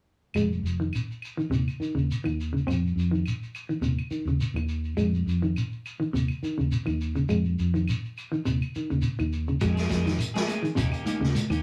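The round, foam-muted fingered electric bass sits up front with a dark, clean semi-hollow guitar's arpeggios in this funky, intense afrobeat excerpt in F minor at 104 BPM, where woody claves and a grainy shekere keep a lightly swung pulse in a rough, small rehearsal room until, at 9.6 seconds, a vintage drum kit with a punchy kick and a slightly broken-up picked guitar throwing stabs through harmonic tremolo join over the Fm7 to Eb7 close, with bright, high-tuned congas following in the background at 9.9 seconds.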